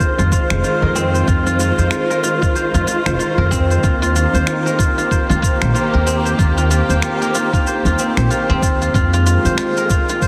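A heavily compressed, radio-like sound sits in light small-room reverb on this mystical organic downtempo excerpt in F minor, moving at 94 BPM in 4/4 with a swung sixteenth-note feel over Fm7 and Cm7 chords. Up front, a silvery guzheng played with fingerpicks rings out arpeggios through a low-pass filter and tape echo, while a distant, lush string section holds dark, bowed chords with vibrato that pump with the sidechain. A gritty, thumpy sampler-style kick and layered electronic shaker and finger snaps drive the groove, and a woody pizzicato upright bass with steel strings, also pumping, plays from 0.2 to 9.5 seconds.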